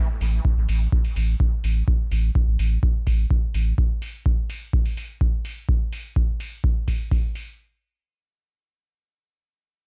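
A round, sine-like sub bass with tube saturation and sidechain pumping opens this driving, hypnotic acid house excerpt at 126 BPM alongside metallic analog hi-hats, a deep, tape-warm kick drum sits up front from 0.4 s, the sub bass drops away at 3.7 s to leave kick and hats carrying the straight 4/4 groove, and the mix stays dry, tuned slightly high to A4 = 441 Hz.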